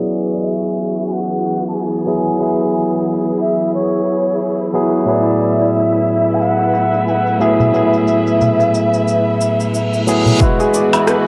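Through a wet spring reverb and a low-pass, home-cassette haze, this earthy, warm organic downtempo excerpt in E major moves at 90 BPM with a 16th-note swing, as a mellow bamboo bansuri carries the melody until 9.7 s over an up-front, barky tine electric piano and a dark, bowed string section that both pump and sit under a filter sweep, while a bright, shimmering santur rings in the background until 3.5 s and returns at 10.4 s, a crisp-hatted, tape-softened electronic kit plays hi-hat, rim click, shaker and woodblock, a clay-shelled darbuka joins at 5.3 s, and a reverse cymbal rises into a punchy electronic kick at 10.4 s.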